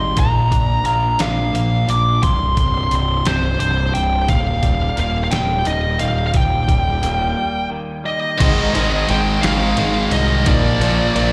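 A brooding, cathartic stretch of slow quiet-loud alternative rock in 6/8 at 58 BPM opens with a dark, up-front, high-gain lead guitar melody over twangy, slightly broken-up fingered arpeggios bathed in lush chorus, slapback echo and analog delay, and a round, fuzzy, overdriven bass; gritty, pitched-down, sampler-style trip hop drums with a thumpy kick join at 0.2 seconds, and at 8.4 seconds the arpeggios give way to two bright, picked, distorted riff guitars, one heavy and high-gain and the other compressed, all heard as a live gig through the venue's PA.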